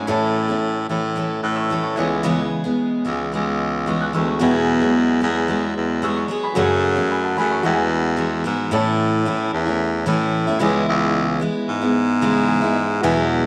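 A bright baritone saxophone with pop-style vibrato carries the bass line up front in this heartfelt, easy-going acoustic pop fragment, alongside a full-bodied picked jumbo steel-string guitar and a mellow, felt-muted upright piano with audible action noise sitting in the background, whose short fill at 12.2 seconds rounds off the passage under a moderate plate reverb.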